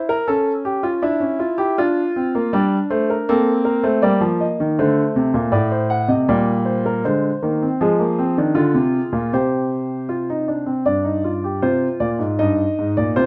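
Lightly reverberant and close-up, this short cut from a longer classical piece presents a serious, driving baroque-style three-part fugue in 3/4 on a solo grand piano with a warm, natural tone, its lines spanning G2 to F#5 and its harmony shifting to a new key center at 7.1 seconds.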